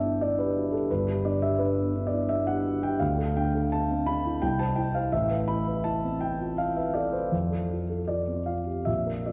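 A lone grand piano opens this dreamy, luminous excerpt of impressionist classical music, its intimate, natural tone and long sustain ranging from G1 to B5 with audible action noise, drifting in a rubato 3/4 around 84 BPM through G6, D5, C, Amadd9 and Fadd9 chords, bathed in a wet concert-hall reverb and vinyl crackle.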